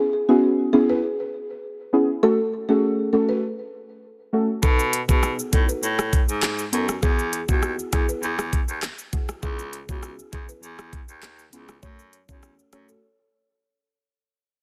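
A breathy baritone saxophone carries the bass line in this hypnotic, bouncy dancehall excerpt, its whispered, intimate tone, scooped notes and soft attack sitting up front with a vintage pop flavour. From 0.3 seconds, a deep, dark chord stab with a detuned, wave-folded edge and chorus moves through C#m7, F#m, B7 and Eadd9, each fast-attack hit decaying away. Over it, a buzzing marimba played with soft mallets picks out a woody, round, airy melody, dry at its core but trailed by delay. At 4.6 seconds the saxophone and an electronic afro-pop drum kit arrive together, the kit built from a knocking kick, smooth hi-hat, handclaps, rim clicks and shaker, with a soft-clipped snare. The dense, heavily limited mix carries light reverb and fades across its whole length before a brief break at 13.0 seconds.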